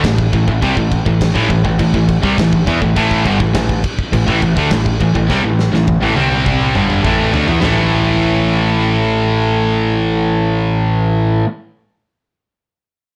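A blown-out, overdriven recording with light reverb carries this short heavy metal excerpt in A minor, set at 103 BPM in a straight 4/4 with a relentless, epic mood. Three overdriven electric guitars play the riff throughout: a sludgy guitar sits up front, bright and picked, while a second sludgy guitar, double-tracked and warm, and a bright distorted electric guitar fill out the background. A growling picked electric bass, direct and amped with punchy overdriven bite, holds the low end until 11.4 seconds. The big rock drum kit brings a punchy kick, a medium-tuned snare, toms and bright crash cymbals in a dark, smooth big-room sound, with a drum fill from 5.3 seconds before the kit stops at 7.8 seconds. The harmony rests on A minor, moving to a C5 power chord at 6.2 seconds and an A5 power chord at 6.8 seconds, before the music shifts into a new section at 7.6 seconds.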